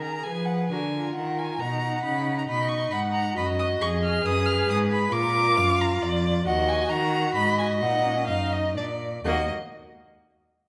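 Urgent and dramatic, this quick classical-period string quartet movement in E-flat minor moves in a rubato 3/4 at 121-139 BPM, with a rich, expressive first violin singing the melody up front with vibrato and portamento, a focused, distant second violin on the inner line, a smooth, even viola accompaniment set further back, and a close cello anchoring the bass, all four playing together from 0.0 to 9.5 seconds in a wet recital hall before this fragment of a longer piece breaks off.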